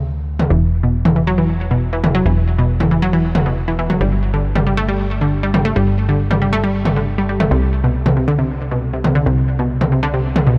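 Soaring and driving, this short cut from a longer uplifting trance piece moves in a straight 4/4 pulse. A plucky analog bass sits up front from the start, its sawtooth and square-wave tone punchy and funky, with a ring-modulated edge and a filter pluck that gives each note a fast attack and a decaying tail. Layered electronic toms join at 0.4 seconds, their sound tape-warm and re-recorded in a small room. At 0.5 seconds a lush, detuned unison pluck enters with arpeggios, full-bodied and also up front, built from sawtooth and sine layers with a touch of noise and carried by tape echo. The harmony moves from E5 to G5 before the chords fall away at 7.5 seconds, all set in a light reverb.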